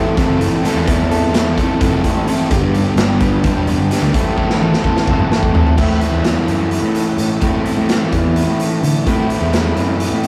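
A rough rehearsal-room recording with warm saturation and moderate reverb carries this dark, hypnotic psychedelic rock passage in 7/8 at 256 BPM in A dorian, where an up-front, double-tracked overdriven semi-hollow guitar riff rides over a round, fuzz-driven picked electric bass, while a gritty garage drum kit with a punchy kick and pumping stone-room sound enters at 0.2 s and plays a fill from 4.4 to 5.8 s as the chords move from Am to G and back.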